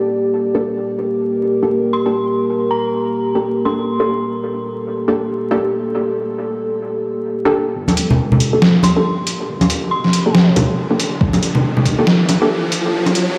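Brooding and dark, this deep dubstep excerpt in G minor moves at 139 BPM with a swung, half-time feel, opening on a moody, sustained analog pad holding a Gmadd9 chord while muted, chorused dub chord stabs with dub echo go through a filter sweep, and an eerie, warbling FM bell melody with phaser appears at 1.9 seconds. At 7.8 seconds the build-up begins as a rumbling, very quiet detuned saw bass enters alongside a muffled, overdriven, pitched-down sampler-style trip hop kit and ringing congas with dub echo, joined by an electronic riser and a thumpy overdriven kick. A huge ambient reverb, vinyl crackle and the sense of a big sound system in a bare room wrap the whole mix.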